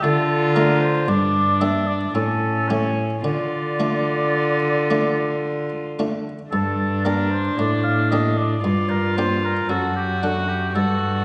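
Oboe, violin, buff-stop harpsichord and cello open together in this solemn, flowing excerpt from a baroque-style sonata movement, moving at 57 BPM in 3/4 through D minor before shifting to G minor at 6.5 s. A warm, distant oboe with vibrato carries the melody over a gut-strung violin's second line, while the muted, lute-like harpsichord supplies dry plucked accompaniment. An up-front cello with a reedy period tone anchors the bass, and the whole ensemble sits in a wet recital-hall reverb.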